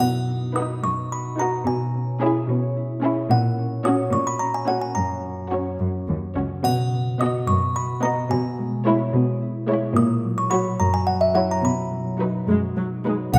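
A spacious, reverberant scoring-stage sound frames this playful, whimsical film cue in B major, moving at a gentle 72 BPM in a straight 6/8 with a magical, quirky air. A delicate, tinkling music box, bright and slightly out of tune, carries the melody up front over ringing, thumb-plucked concert harp arpeggios and a veiled, con sordino cello bass, while muted violin and viola sections, dark and softly bowed with vibrato, add a background melody, a second line and accompaniment from 0.6 seconds. A triangle sparkles at the start and again at 6.6 seconds, and at 13.3 seconds an airy silver flute and a close, muted double bass section sound briefly before the cut.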